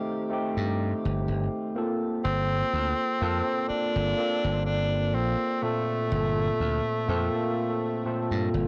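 Vaporwave in G minor at a slow 62 BPM in straight 4/4, this short cut from a longer piece carries a nostalgic, melancholic mood. An overdriven tine electric piano opens the piece at 0.0 seconds, barky and bright through a combo amp, with subtle chorus and tape echo colouring its accompaniment as the harmony moves from a rootless F9 to Gm11 at 1.8 seconds. A punchy, amped slap bass joins at 0.6 seconds, sitting direct and up front in the low register. At 2.2 seconds a clear tenor saxophone takes the solo melody in a classical style, with light vibrato and a smooth top, roughened by vintage 12-bit sampler grit and tape echo. The whole is placed in a small room and captured on dry, gritty hardware with transformer saturation and cassette tape character.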